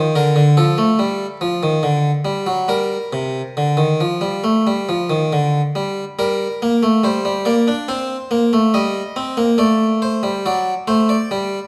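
A bright, airy French-style harpsichord with a single set of plucked strings sits up front, alone from the start, in this solemn, serious baroque-style two-part invention in G minor at a measured 70 BPM in 4/4, its brief 11.7-second span moving into a second section at 6.2 s, all heard through a reverberant recital hall and a layer of vinyl crackle, cut from a longer piece.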